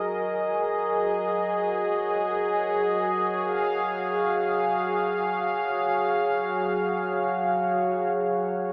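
Luminous and serene, this free-time ambient fragment from a longer piece features a solo warm analog pad, smooth and warbling with a detuned, wave-folded vintage tone, soft attack and chorus, sitting up front as it drifts from F#6 through C#/F# to F#sus2, bathed in a huge reverb that suggests a vast, echoing space heard through a small speaker.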